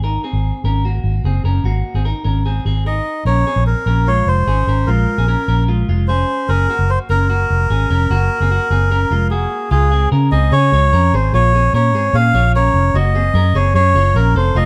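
In a straight 4/4, this wistful, bittersweet stretch of jangly indie pop, cut from a longer piece, rests on a dark, foam-muted vintage bass that sits round and punchy up front, while a bright, twangy clean electric guitar picks arpeggios through spring reverb beneath it. At 2.9 seconds a reedy, nasal melodica enters close and dry with the melody, its breathy plastic-case tone carrying over chords that move from Abadd9 through Bbm7 and Gbadd9 before arriving on Db at 9.7 seconds. The whole has the light reverb and rough feel of a home demo.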